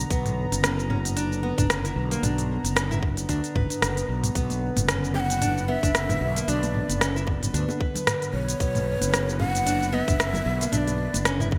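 A breathy, hollow ney with vibrato and digital delay carries the melody from 5.1 seconds in this hypnotic, warm organic downtempo excerpt, as a growly fretless bass with analog chorus sits up front beneath fingerpicked nylon-string guitar arpeggios in a digital delay, a smooth analog pad with chorus and sidechain pumping sustains a single chord, an electronic kit with crisp hats and gated reverb and a tight electronic kick drive the swung groove, and very quiet, ringing congas and bongos join at 4.5 seconds, set in a bright 1980s-style digital production with light reverb.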